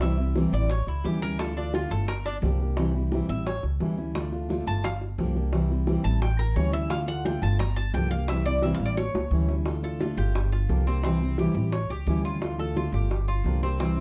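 Cuban son and guajira in a nostalgic, warm mood, built on a cycling C, A7, Dm, Gm7 progression. A metallic, double-strung tres takes a picked, arpeggiated solo until 9.7 seconds, as a full-bodied fingerpicked steel-string guitar with audible finger squeak and a thumpy, woody pizzicato upright bass sit up front, and round, low-tuned bongos played with soft hands add a drum fill from 9.0 seconds. Light reverb and a dark production frame this fragment of a longer piece.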